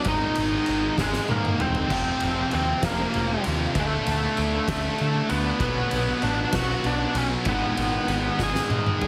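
Brooding and cathartic, this quiet-loud alternative rock excerpt moves at 65 BPM in 6/8, with a biting, overdriven lead guitar carrying the melody up front over two double-tracked, high-gain distorted guitars playing a riff (one very quiet), a growling picked bass, and an oversized low-tuned drum kit with a fat snare, punchy kick and dark cymbals that plays fills at 1.0 and 8.4 seconds, while a very quiet bowed string section adds soft, expressive sustained chords from 1.9 seconds, the whole mix set in a small room with light reverb and a heavily compressed radio sound.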